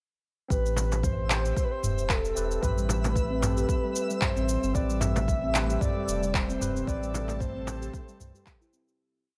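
Organic downtempo with a hypnotic, meditative swing, where a breathy, flute-like synth lead traces arching motifs over barky, lightly overdriven tine electric piano chords, a round sub bass, a layered afro-pop kit of cabasa, handclaps and low toms with a soft electronic kick, dry close frame drum, a ringing steel tongue drum arpeggio entering at 2.8 seconds, an airy pad arriving at 4.8 seconds, and a twinkling granular shimmer held high in the background, before the whole groove fades out from 6.2 seconds.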